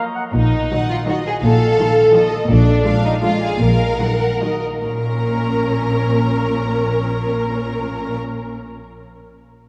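Mischievous and sneaky, this playful, whimsical cinematic film cue in Bb minor moves in 3/4 at 138-170 BPM and slows down between 2.0 and 4.8 seconds. A close, focused double bass section, a cello section with a smooth top and a focused violin section on a second line start at 0.3 seconds. Expressive violas with portamento and a high, smooth bowed violin melody sitting lower in the mix join them at 0.7 seconds. The harmony moves from Ebm/Bb through F7/Bb and Bb7 to Bbm, and a dark production wraps the strings in a wet church reverb.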